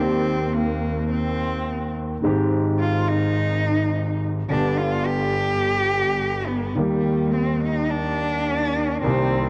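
A rubato tango in 4/4 at 106 BPM, passionate and dramatic, this fragment of a longer piece moves through Cm7/Eb, Abmaj7, G and Eb. A bowed cello carries the solo throughout its 9.5 seconds, close and up front with a soft attack, expressive vibrato and portamento, colored by cassette tape and analog delay, while a concert grand piano with deep bass sits equally forward under the same tape coloring. Farther back, a bowed double bass adds an earthy, clear foundation with light vibrato, all placed in a small room with light reverb and the homespun feel of a cassette recording.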